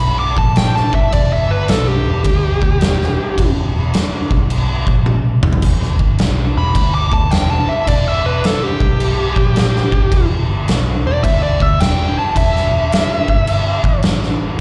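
Blues rock and southern rock from a power trio, this gritty, heavy excerpt swings at 107 BPM in E minor over a single E minor chord. A smooth, overdriven lead guitar with slapback echo solos up front from the start, while a round, foam-muted picked bass holds the low end. An oversized, low-tuned acoustic kit with a boomy kick, dark cymbals and a pumping room sound enters at 0.4 seconds and plays a fill at 5.1 seconds, all heard as a live gig through the venue's PA with light recital-hall reverb.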